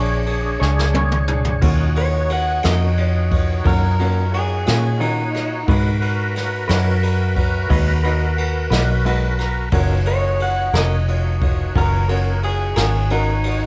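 A smoky, mournful slow blues in Eb minor at 59 BPM in 12/8 opens on a Bb7#9 chord, with a bright, intimate grand piano, a slightly broken-up, lo-fi electric guitar through a small old amp with tremolo, a lightly overdriven tonewheel organ holding sustained chords through chorus vibrato and a slow rotary speaker, and a dark, foam-muted fingered electric bass sitting round and punchy up front. At 0.3 seconds a brushed jazz kit enters, distant and roomy with dark cymbals and a boomy kick, and plays a fill into the main section, where the harmony moves from Ebm7 to Abm7 and back. At 2.0 seconds a second compressed, picked guitar through a small amp takes a clean solo line, bathed in spring reverb. The piano stays in the background with a brilliant, polished tone, long sustain and audible action noise, stepping forward for a fill at 8.7 seconds. The home cassette recording has little reverb on the room, and the passage is cut from a longer piece.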